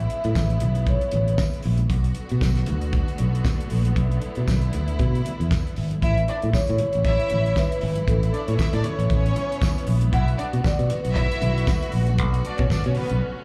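Heard as a live gig through a venue's PA, the sound is fairly dry with a touch of club reverb, and this fragment is cut from a longer disco piece with a glamorous, sultry mood and a lightly swung groove. A damped 70s drum kit sits up front with a fat snare, tight kick and hi-hat. Beside it, a fingered electric bass with a warm, direct tone carries the low end under chords that move between Amaj7 and Bm7. A clear, close studio string section holds lush bowed chords with vibrato throughout. Faint congas with a thin, vintage skin and a jingly tambourine in the background fill out the percussion. A mellow, ringing vibraphone played with soft mallets and fast motor vibrato touches the melody briefly at the start and returns at 6.0 seconds with slapback echo, joined at the same moment by a symphonic violin section playing a smooth, focused second line, before the band hits an accent at 13.2 seconds.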